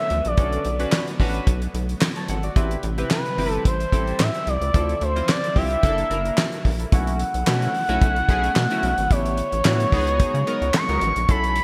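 Bright, digital 1980s-style production with light reverb and a small-room ambience frames this danceable, late-night slice of early-eighties boogie funk in B phrygian, moving at 110 BPM in a straight 4/4. An up-front, damped 70s drum kit with a fat snare, tight kick, hi-hat, handclaps and gated reverb joins a rubbery, bouncy square bass with a resonant filter pluck, while a glossy, chorused polysynth with pulse-width modulation and filter sweeps adds accompaniment over a very quiet, swirling phased string machine holding sustained chords. On top, a smooth, mellow sawtooth lead carries the melody with expressive vibrato and portamento, riding a progression from Bm9 through F#7alt before shifting at 6.9 seconds to a suspended passage on B9sus4, A9sus4 and C#9sus4.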